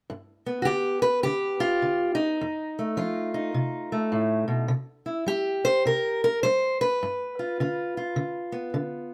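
A fingerpicked steel-string parlour guitar with old strings and a woody, boxy tone sits up front and plays alone from 0.1 to 9.1 seconds in this gritty, swaggering snippet of acoustic country blues, swinging its eighth notes over G7, F7, C5 and back to G7, caught by close, detailed microphones in a moderate studio reverb.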